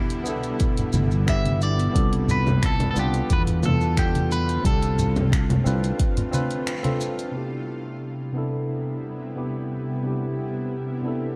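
A straight 4/4 groove at 89 BPM sets an easy, sunny sunset chillout mood in C major, built on a deep house kit of finger snaps, hi-hat and shaker over a deep, tape-warm electronic kick, with soft-handed acoustic congas sitting in the background. A round fretless bass with tube saturation anchors the low end, while a barky, slightly out-of-tune tine electric piano with tape echo plays up front over a shimmering, warbling ambient pad with chorus and an octave-up glow. A bright, picked clean electric guitar carries the melody through phaser and tape echo, drifting over a smooth Cmaj7, G7/C and F6/C progression. The guitar and bass fall away around 6.0 seconds, and a brief band accent lands as the congas stop around 7.0 seconds, just before the drums finish at 7.3 seconds. The electric piano and pad then hold the returning Cmaj7 alone until 11.4 seconds, all in a dark, lightly reverberant production of this excerpt from a longer piece.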